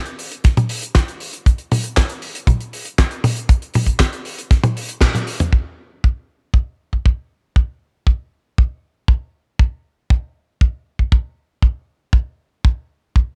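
A straight 4/4 pulse at 118 BPM drives this nostalgic, melodramatic italo disco excerpt, where a dry, up-front damped 70s drum kit of handclaps, hi-hat, fat snare and toms plays until 5.5 seconds, closing with a fill and band accent around 5.0 seconds, while a tight acoustic kick drum with a rolled-off top carries on to 13.3 seconds in a close, nearly reverb-free sound.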